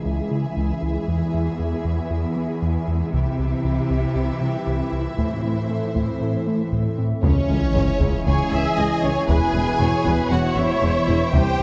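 A straight 4/4 pulse drives this relentless, tense stretch of hybrid orchestral and electronic film score, where bright violins, expressive filtered violas, a hollow chorused pad, rich cellos, a smooth filtered synth bass and a very quiet, ringing harp-like synth pluck playing arpeggios open over a huge, dark impact and sub drop; heavy-stick taiko drums join at 3.1 s, and at 7.2 s a warm, close violin melody arrives with clear trombones, mellow French horns, distant double basses and a second impact, inside a moderate scoring-stage reverb.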